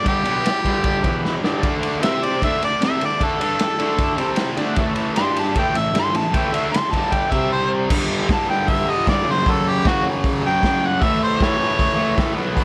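A straight 4/4 drum beat at 153 BPM drives this swaggering, raw garage rock cut from a longer piece, with a gritty, up-front acoustic kit, punchy kick and a drum fill at 1.2 seconds, a double-tracked fuzz guitar riff, a mellow harmonica melody with scooped notes and light vibrato through overdrive, and a buzzy, very quiet combo organ holding chords and adding a fill at 4.0 seconds before dropping out at 7.9 seconds, all set in a small, lightly reverberant room.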